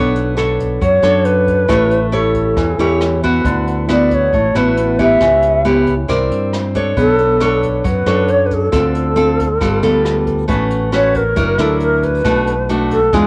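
A fingerpicked nylon-string guitar, up front with fresh strings and finger squeak, opens this sophisticated, romantic bossa nova at 136 BPM alongside a round, punchy fingered electric bass with tube saturation, while a distant, roomy brush kit with boomy kick, hi-hat and rim click joins at 0.2 seconds. From 0.8 seconds a breathy, mellow shakuhachi carries the melody with vibrato, soft attack and rolled-off highs, over jazzy changes that move from Bm9 through chords like C#m7b5, G9 and F#aug7 before settling on Bm7. The guitar and drums carry a cassette-tape character, and the whole home-made cassette recording sits in moderate spring reverb and small room ambience, cut from a longer piece.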